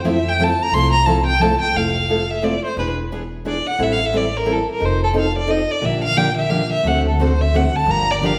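Charming and lively, this excerpt of jazz manouche swings along at 176 BPM in 3/4 and F major, with an expressive bowed violin soloing up front throughout, its tone warm and smooth on top, with vibrato and portamento. Underneath, a boxy old ladder-braced acoustic guitar with dark, worn strings picks out the accompaniment, joined by a full-bodied jumbo steel-string guitar in the background that plays until 1.5 seconds and returns at 5.8 seconds with audible finger squeak, while a thumpy pizzicato upright bass on gut strings anchors the low end. The players sit in the wet reverb of a church or concert hall as the chords move from Fmaj7 through E7, Am7, F7, Bb6 and D7 to Gm7.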